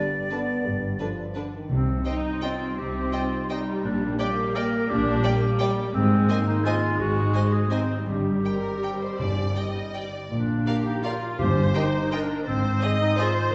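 Heard from further back in a reverberant scoring stage with a dulled top end, this bittersweet, dark classical passage in C minor moves in a rubato 3/4 at roughly 154-185 BPM and is cut from a longer piece. A brief opening has an airy silver flute, a French horn section holding sustained chords, and a ringing, mellow concert harp spinning arpeggios in the background beneath the lush, bowed strings. A rich, focused violin section carries the melody with vibrato, supported by an expressive second violin line, smooth, even violas, and a cello and double bass section grounding the bass. At 1.7 s the music turns to C minor as a soft-attacked, roomy clarinet takes over the second line, and timpani struck with hard mallets on calf heads add articulate accents there and again from 9.2 s. The harmony travels through Ab, Bb and Eb before settling on Ab, giving the ensemble a dusky, warm glow.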